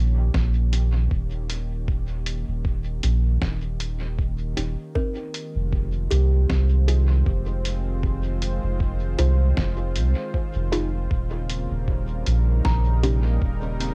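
Ambient dub at 78 BPM in 4/4, with a lazy swing on the sixteenths and a hazy, spacious mood, this short cut from a longer piece sits on a home-cassette sound with little reverb. A smooth, detuned sawtooth pad fades in from the start with slow-attack sustained chords, softened by chorus and tape, while a deep, round sub bass with tube saturation sits up front, mellow and sustained under the harmony as it moves from Eb7 to Fm7 and back to Eb7. A compressed, muffled electronic kick thumps in the background alongside a lo-fi sampler-style kit of congas, hi-hat and a medium-tuned snare, both carrying studio reverb, with dub echo trailing the kit. Dark, muted chord stabs with a detuned filter pluck decay through chorus, tape and dub echo. At 5.0 seconds a close-miked, dry kalimba enters with woody, hollow-box arpeggios, its short thumb-plucked notes colored by tape echo.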